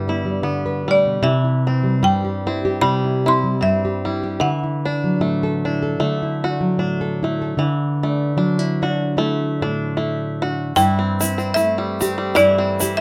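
A hard-mallet marimba carries the melody from the opening moment, its woody, percussive tone lit by a plate reverb, while a nylon-string guitar and a bluegrass banjo play beneath it. This short acoustic folk piece for a small band feels hopeful and peaceful, moving at an unhurried pace with a gentle swing and tuned a touch below standard pitch. The fingerpicked guitar sits up front with a dark, deep classical sound, and the twangy, mellow banjo spins quieter arpeggios farther back. At 10.8 seconds, as the harmony shifts into the closing passage, a grainy egg shaker joins softly in the background. The recording is close and detailed, set in a moderate studio room, and the passage is cut from a longer piece.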